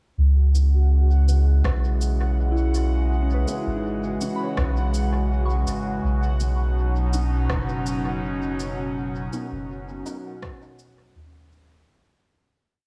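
A sparse, echoing beat of electronic cabasa and rim click sets a straight 4/4 pulse at 82 BPM, with a very quiet, overdriven kick entering at 1.6 s under soft, round sub bass playing long gliding notes up front in this hazy, spacious ambient dub piece in C# minor. A warbling, lo-fi pad holds slowly shifting chords from C#m7 to Bmaj7, while a resonant, bubbling texture sustains a held high note, and muted chord stabs with phaser and dub echo sit in the background, sweeping through a filter. A pure FM bell joins at 2.5 s with four slow arpeggio loops of unequal length drifting against each other under a filter sweep and analog delay, all set in a small-room ambience before the fade-out from 8.0 s.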